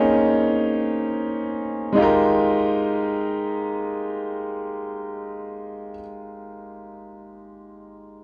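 A clear concert grand piano opens this brief amapiano fragment, cut from a longer piece, and carries it alone from 0.0 to 8.2 seconds in F minor. Played in free time, it moves through a Bbm11 chord before settling on Fm11 at 2.0 seconds, staying in a range from Ab3 to Db5 and setting a soulful, late-night mood. The piano sits up front with an intimate, boxy character, deep bass and long sustain, and the action noise of the instrument can be heard beneath the notes. A wet small-room reverb surrounds the sound, while worn cassette tape adds warbly pitch drift and a faint mains hum that give the recording an aged feel.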